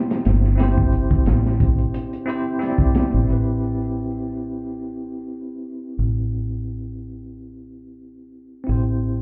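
Trip hop with a hypnotic, dark mood, cut from a longer piece, where a bell-like tine electric piano with tremolo, low-pass filter and tape echo plays over a round, foam-muted fingered electric bass, while a crunchy, gritty breakbeat drum kit with a high-tuned snare and tight kick plays only until 3.1 s, all heard muffled as if through a wall in a small room with club reverb.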